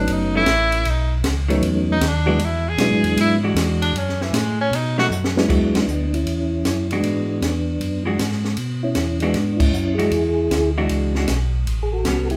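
A swinging 4/4 groove at 156 BPM drives this greasy soul jazz organ trio in E mixolydian. Up front from the start, a bright tenor saxophone takes a solo with scooped notes and vibrato, carrying the melody through the opening seconds before a drum fill leads into the second section at 5.5 seconds. Alongside it, a soft, flute-like tonewheel organ plays a percussive melody line through a slow rotary speaker with chorus vibrato. A second organ handles the bass, dark and round with light overdrive and the same slow rotary swirl. A compact cocktail kit of crash, hi-hat, ride, high-tuned snare and punchy kick sounds dry and natural, while a clean, picked hollow-body electric guitar adds compressed accompaniment. The band plays live in one large studio with moderate reverb, landing accents together at 5.7 and 9.5 seconds.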